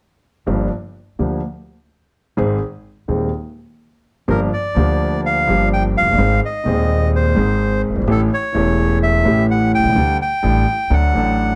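A reedy, bright bandoneon carries the melody up front from 4.3 seconds in this tense, dramatic tango excerpt, moving at 126 BPM in 4/4 with a rubato feel and tuned to A4 = 439 Hz. Alongside it, an up-front concert grand piano with a deep, natural bass accompanies, while a woody pizzicato upright bass anchors the low end from the opening, over chords that move from Gm7 and Ab to A7, then Dsus4 resolving to D. Light reverb and a dark, warm production give the short passage a brooding weight.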